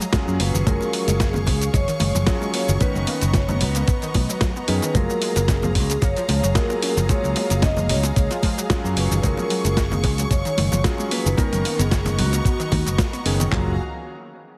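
A gritty, sampler-style drum kit drives a light 16th-note swing at 112 BPM in 4/4, with a thumpy, up-front kick, handclaps, toms, snare, hi-hat and shaker, while ringing bongos and congas sit dry in the background and a fingered electric bass holds the low end up front. This feel-good, groovy nu-disco excerpt in F# major moves through D#m11/F#, Bmaj9/F# and F#maj9. An electric grand piano with a clangy, vintage low register adds accompaniment through tape echo, a lush bowed string section sustains the chords, a round, chorused analog pluck plays arpeggios with dub echo, and all three pump with sidechain compression. From 0.4 seconds a bright, metallic vibraphone carries the melody with 12-bit grit and dub echo, all heard in light digital ambience with a heavily compressed, radio-like finish.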